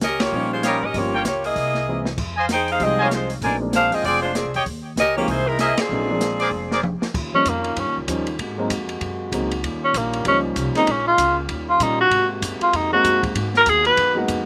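Brassy and joyful, this big band swing excerpt at 193 BPM in Eb mixolydian opens with a clear saxophone section carrying the melody under slapback echo, punctuated by vintage trumpet section stabs, over a woody pizzicato upright bass, a dark drum kit with a boomy kick and a natural-sounding baby grand piano, before a breathy, whispered tenor saxophone solo, also with slapback echo, takes over at 7.1 s against tight, soft-attack trombone section chords.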